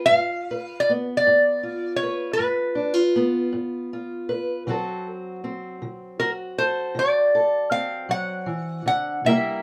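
Acoustic country blues in a slow, swaggering 12/8 at 52 BPM, this soulful fragment is cut from a longer piece. A fingerpicked steel-string acoustic guitar carries the accompaniment from the start, its dark, boxy parlour tone sitting up front in the lower and middle register. Almost at once, at 0.1 s, a lap resonator guitar takes the melody, played with fingerpicks and a slide, its metallic, nasal voice standing louder and higher over the accompaniment. The harmony moves from G7 to D7 at 4.7 s, and both guitars play through to the close at 9.6 s. A moderate studio reverb gives the pair a modest sense of room around their close, present sound.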